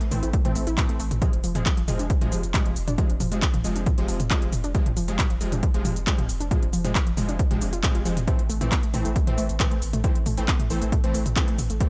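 A straight, driving 4/4 at 136 BPM powers this relentless, dark peak-time techno excerpt, where a punchy, up-front electronic kick arrives at 0.3 seconds over a drum kit of handclaps, smooth hats, shaker and toms pumping in a small room, while a deep, saturated sub bass with overdrive and a low-pass filter anchors chords moving from Am to Fm and back at 8.3 seconds, an aggressive, wave-folded rave stab with chorus, built-in reverb and analog delay cuts through brightly, and a warbling, dusty, detuned pluck riff sits mellow in the background, all captured in a dry, gritty hardware sound.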